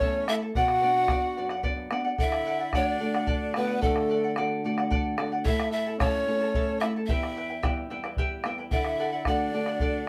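A breathy, bright bamboo pan flute with a soft chiff carries the melancholic, wistful melody of this Andean folk piece in 6/8 at 73 BPM, above a clear tenor saxophone second line with classical vibrato, shimmering fingerpicked charango on double strings up front, a small, warm nylon-string guitar, and a deep, dark bombo, all played live in one room with a short, wet studio reverb.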